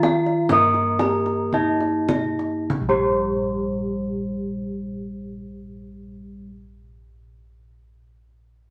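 A bronze metallophone struck with a wooden mallet leads this serene, shimmering Javanese gamelan excerpt, its ringing, airy melody sitting up front. The music eases to a slower pace over the first 2.7 seconds before moving into a new section. Beneath the melody, a second metallophone plays accompaniment, while a third adds arpeggios. Of these two, one has a bright horn-mallet attack and the other a vintage, band-limited tone whose paired tuning gives it shimmering beats. Bossed gongs play close-miked, dry and full arpeggios, and a lower set of gongs, struck with padded beaters, carries a mellow, soft bass in the background. A tight kendang, played with soft hands in a small-room sound, drops out at 3.3 seconds, and the whole passage sits in a studio reverb, cut from a longer piece.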